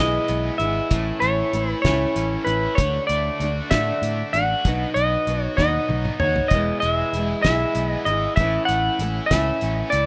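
Nostalgic and jangly, this short folk rock and heartland rock excerpt moves at an unhurried 64 BPM in 6/8 in E major, cycling through E, A, D and B. An up-front clean electric guitar carries the melody with tape echo over a picked steel-string acoustic with audible finger squeak, a bright, double-tracked overdriven guitar riff with tremolo, and a dark, round fingered bass, while a damped 70s kit with a fat snare and tight kick comes in at 0.3 seconds and plays a fill from 5.6 to 6.5 seconds. The sound is a rough home demo in a small room with light reverb and a faint mains hum.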